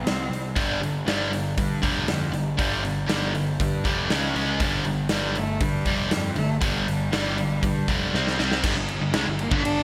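A straight 4/4 hard rock pulse at 119 BPM drives this anthemic, powerful snippet. The big, punchy drum kit sits up front with gated reverb, and a fuzzed, round electric bass holds the low end. A cranked, bright stack guitar and a hollow-body semi-hollow guitar further back grind out power-chord riffs on G5 and C#5 from 0.6 seconds. A rich, bowed cello with vibrato and digital delay returns at 5.4 seconds and takes a solo from 8.6 seconds after a drum fill, all wrapped in lush hall reverb and glossy 1980s-style digital production.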